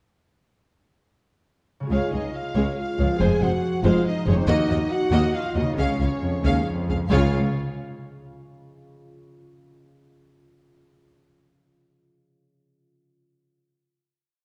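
A ringing concert harp rolls arpeggiated chords from 1.8 s, and at 1.9 s an orchestra joins in this triumphant, heroic adventure-film cue in Db major at 139 BPM in 3/4, with a lush violin section carrying the melody over a driving ostinato, a distant second violin section doubling the tune at the octave, background violas adding sustained chords, a mellow French horn section in loose classical style, and expressive cellos and rich double basses anchoring the bass line, set in moderate scoring-stage reverb with a dark, warm production before resolving on a final chord at 7.1 s.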